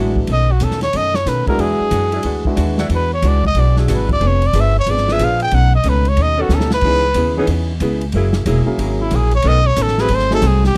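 A warm, lightly vibrato trumpet solos up front through this brassy, energetic big band swing excerpt at 184 BPM, carried by woody pizzicato upright bass, a mellow saxophone section holding soft-edged chords from 1.5 s, clean, picked hollow-body archtop guitar, a clear grand piano that drops out and returns at 6.8 s, and an airy, polished drum kit with a punchy kick and a short fill at 6.5 s, all captured in a dry, close 1970s-style studio sound.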